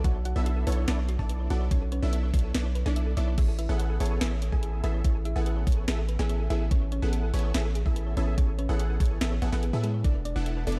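Euphoric and playful, this future bass excerpt moves in a half-time feel, with a knocking electronic kick up front and a trap kit of sharp snare, bright hi-hats and crash cymbal underpinning a deep, sine-toned 808 bass that sustains long and pumps with sidechain. A punchy, detuned supersaw stab riff with a moving notch and the same pumping sits over the groove. Two round, tine-like thumb-piano-style synth plucks, one carrying the melody and one the arpeggios, sit in the background with chorus, pumping and dub echo as the harmony passes from Bm11 to Amaj9 and lands on E7sus4 at 10.0 seconds, all within a dark digital ambience.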